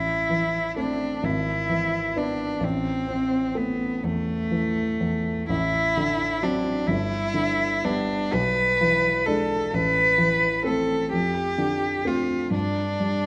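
A moderate scoring-stage reverb surrounds this lyrical, serene romantic classical passage in 6/8 with free rubato, where a single rich, focused cello sings the bowed melody with vibrato up front while a smooth, vintage-toned grand piano with short sustain accompanies it just as close, both playing throughout the 13.3 seconds.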